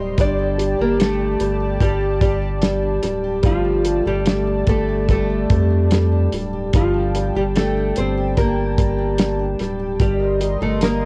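A cassette home recording with faint mains hum and a short booth ambience carries this heartbroken, emotional pop ballad excerpt at 74 BPM in 4/4, where a fingerpicked nylon-string guitar carries the melody up front beside a dry, dark, damped 70s drum kit with a tight kick, both tinted by cassette tape, over a deep, saturated sub bass, a clear baby grand piano in the background with plate reverb, a mellow, detuned sawtooth pad holding sustained chords with chorus and plate reverb, and a very quiet picked steel-string acoustic guitar playing arpeggios with finger squeak, as the harmony moves from Dsus4/G through Dmadd11 and Gmadd9 to Cm7/G.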